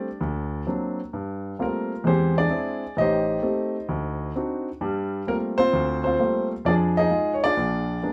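Swung eighth notes at 130 BPM in 4/4 carry this short solo jazz passage in G minor, cut from a longer piece. A lone grand piano sits up front with an intimate, natural tone and audible action noise, ranging from A1 to Eb5 as it moves through Gm11 and Am7b5 colored by altered dominants such as D7b13, E7alt and Bb7b9. A moderate studio reverb frames the playing and lends the whole a cool, late-night mood.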